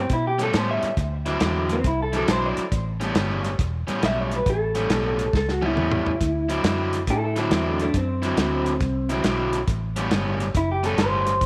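A clean, slightly broken-up electric guitar solo through a small old amp opens this gritty, laid-back electric blues shuffle, compressed and up front, with a round, foam-muted fingered bass sounding beneath it from the start. A dry soul drum kit with a tight kick, a medium-tuned snare and a rolled-off top joins at 0.1 seconds, keeping a loping swing feel on hi-hat, kick, snare and toms. An overdriven semi-hollow guitar enters at 0.4 seconds with a picked, hollow-bodied riff, also placed up front. A drum fill breaks in at 5.3 seconds, just before the harmony moves from A9 back to D9. Light reverb gives the band a modest sense of space in this brief cut from a longer piece.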